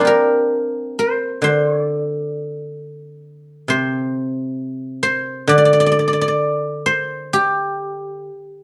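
Longing and elegant, this brief fragment of Chinese traditional music is cut from a longer piece and features a solo guzheng. The tempo sits around 66 BPM in 4/4, though the playing moves freely in rubato, with the instrument tuned slightly high to A4 = 442 Hz. The guzheng is played with fingerpicks, giving a silvery, ringing tone that stays up front. Its range spans from C3 to D5 across the whole 8.6 seconds. A light reverb and the feel of a live room lend the acoustic sound a gentle sense of space.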